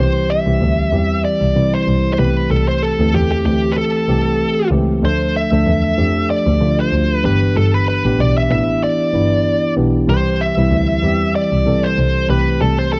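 A dry, close small-room recording carries this romantic, uplifting 1980s-style pop excerpt at 95 BPM in C major with a light sixteenth-note swing, where a dark, picked, distorted lead guitar sits up front playing a bluesy melody over a worn, slightly out-of-tune tine electric piano and a bowed double bass that sounds earthy and smooth-topped with light vibrato, the chords moving through C, Am7/C, Dm and G6.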